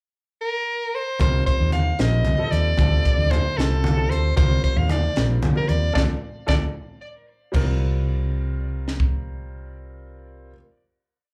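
An edgy soprano saxophone opens this short, intense electric jazz fusion piece alone at 0.4 seconds, sounding a forceful, motif-based line of call phrases with vibrato, dressed in plate reverb, slapback echo and tape echo. At 1.2 seconds the band arrives together in a straight 6/8 at 76 BPM in C dorian, moving between Cm7 and Dm7. A woody fretless bass sits up front with a growly, hollow-body tone and a syncopated riff, while a crisp fusion kit lays down an airy 6/8 groove with a high-tuned snare and punchy kick. A clear concert grand adds syncopated quartal stabs with audible action noise, and low-tuned congas keep an evenly spread pattern from the background of a large room. The band hits an accent on Dm near 6.0 seconds, the piano slips in a fill, and the piece closes on a C5 chord heard through a club PA.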